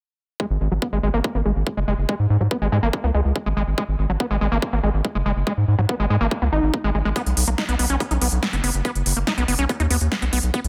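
A gritty, squelchy acid bass riff and a tight electronic kick open this hypnotic psychedelic trance passage together at 0.4 s, with a round analog bass arriving a moment later. Set at 142 BPM in a straight 4/4 in G# minor, the music sits on a G#5 harmony that moves to B5 at 7.2 s. The resonant sawtooth acid line, ranging from F#3 to D#4, is distorted, pumps against the sidechain, trails tape echo and carries a filter sweep throughout. Beneath it the deep square-and-sine bass, wave-folded and sustained, evolves across F#1 to G#2 as the loudest part, while the high-pass-filtered kick stays up front. At 7.2 s a punchy, overdriven dance kit of snare and crisp hi-hats joins, re-recorded in a large room. Light reverb and a dense, heavily limited modern master shape this fragment, cut from a longer piece.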